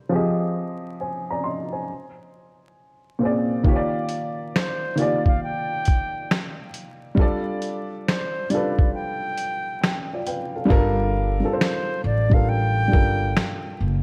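Hazy with vinyl crackle, light small-room reverb and a dark production, this melancholic lo-fi hip hop piece in G minor moves at a swung 68 BPM, opening on a mellow, intimate upright piano with audible action noise under a filter sweep, joined at 3.6 seconds by gritty, compressed boom bap sampler drums with a thumpy kick, medium-tuned snare, hi-hat and finger snaps, then at 4.5 seconds by a pure, straight-toned concert flute melody, before a break leads to 10.7 seconds, where the hi-hats drop out and a woody pizzicato upright bass enters as the chords arrive on Gm7.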